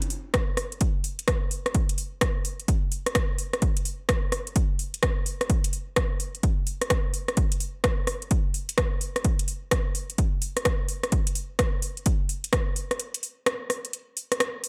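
UK garage drum groove with a skippy, bouncy feel, swung on the sixteenths and cut from a longer piece. A house drum kit of metallic hi-hats and rim clicks runs throughout, joined at 0.3 seconds by a punchy electronic kick that drops out at 12.6 seconds, ahead of a brief break from 13.0 seconds before the kit finishes at 14.7 seconds. Both parts are layered and overdriven, sitting up front with the grit of a large room, though the overall mix stays dry.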